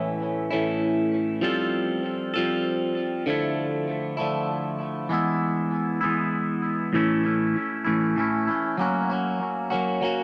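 Swaying in a slow, straight 6/8 at 65 BPM, this trippy, hypnotic rock fragment, cut from a longer piece, features a solo twangy electric guitar, bright, clean and picked up front, run through phaser and tape echo in an echo-heavy mix with moderate spring reverb as it moves through A, Fadd9, Dmadd9 and E before shifting at 6.9 seconds to A and F#.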